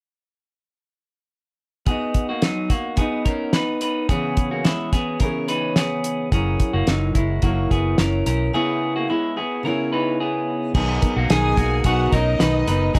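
A straight, steady 4/4 pulse comes from a cloth-damped drum kit, thuddy and dry, with a fat snare, tight kick and dark, rolled-off cymbals sitting up front from 1.9 seconds. This bright, breezy slice of jangly indie pop opens with a full-bodied fingerpicked steel-string acoustic guitar and a twangy, slightly broken-up electric guitar playing arpeggios through a small old amp, its picked notes trailing a tape echo. At 6.3 seconds a vintage muted electric bass joins, round and punchy with a foam-damped, amped tone. The chords move through B, E6, F#7 and C#m7 before settling on Bmaj7 as a new section opens, and at 11.3 seconds a second, lo-fi electric guitar takes up a short picked melody with a subtle chorus. A lush studio violin section adds an expressive, vibrato-rich second line in the background, all within a light reverb, as this excerpt of a longer piece closes.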